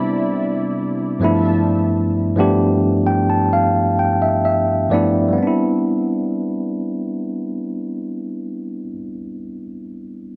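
A clean, up-front tine electric piano and a detuned, warbling analog pad with lush chorus open this dreamy, smooth R&B excerpt together in C major at a slow 65 BPM, the pad holding vintage sustained chords over Cmaj9 and G13 before dropping out at 1.7 seconds. The piano carries on alone, sounding as if played through its built-in speakers, and adds a fill from 2.6 to 5.4 seconds, where a new section returns to Cmaj9. Light reverb and small-room ambience surround a dry, gritty hardware sound, with the whole piece tuned slightly flat to A4 = 436 Hz.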